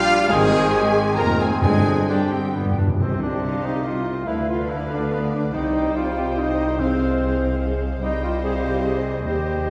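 Classical orchestral music in 3/4 with a rubato feel, stormy and dramatic, set back in a reverberant scoring stage as a cut from a longer piece. A warm, lush violin section carries the melody in the background while clarinet, a pure small flute group, mellow cor anglais and a second, richer violin section weave second lines over bassoon and viola accompaniment. Dark French horns sustain chords throughout, clear trombones and trumpet stabs sound only until 2.8 seconds, and cellos, tuba and double basses anchor the bass as round, soft-mallet timpani enter at 1.6 seconds with a fill at 2.5 seconds.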